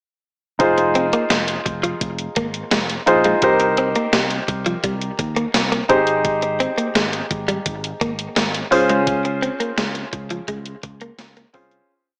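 A big backbeat from an up-front, sampler-style 1980s drum machine, with a thumpy kick and gated-reverb snare, drives this urgent, dramatic pop piece at 85 BPM in F minor, while a growly fretless bass plays driving eighth notes beneath it. A present, polished grand piano pushes the chord rhythm in close voicings with short sustain through Fm7, Cm7, Abmaj7 and Dbmaj7. A clean, compressed guitar recorded direct adds a muted single-note line with lush chorus and tape echo, all set in plate reverb with a small-speaker sound before fading out from 9.1 to 11.9 seconds.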